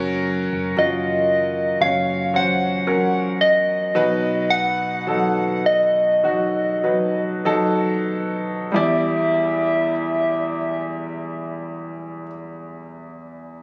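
Heartbroken and longing, this slow pop excerpt in E harmonic minor moves at 46-59 BPM in a straight 4/4, easing down in pace through its first 8.7 seconds as the chords shift from F# to B before settling on Em7. A clear, woody upright piano sits up front as accompaniment throughout, while a dark, foam-muted electric bass holds a round note in the background only until 3.9 s. Above them, a gentle, warbling FM synth lead with a keys-like, decaying tone carries the melody from 0.8 s, colored by chorus and tape echo, all heard through a phone-in-the-room recording with club reverb and digital ambience.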